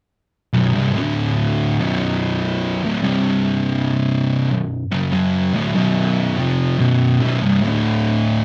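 The recording has a moderate studio ambience and the feel of a band playing live in one room, though only the fuzz guitar is heard in this short cut from a longer piece. It is a heavy, sludgy metal passage in B minor at a slow 72 BPM in a straight 4/4. The electric guitar plays from 0.5 to 8.4 seconds, and its picked, double-tracked tone is dark and distorted with fuzz, sitting up front in the mix in a low range from B1 to F#3. The harmony moves between B5, D5, B minor and C5 power chords before returning to B5. At 7.2 seconds a new section begins, in which the guitar shifts to D5 for the closing moments.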